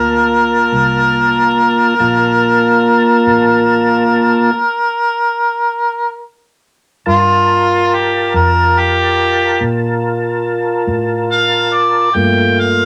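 Harmonica takes the lead in this brooding, soulful slow blues in G minor, its warm, overdriven tone carrying light vibrato and scooped notes in a jazz style that sounds distant and roomy yet sits up front. The tempo is a slow 47 BPM in 12/8 with a straight feel, and the harmony rests on a rootless Gm9. A mellow tonewheel organ holds sustained chords throughout, its round, clean sound colored by a slow rotary speaker and chorus vibrato. Beneath them, a vintage muted fingered electric bass gives a dark, foam-muted, punchy low end. A stop falls between 4.5 and 7.1 seconds, and from 7.1 seconds the harmonica carries a solo to the close of this 12.9-second cut from a longer piece. Moderate studio reverb gives the parts a sense of space.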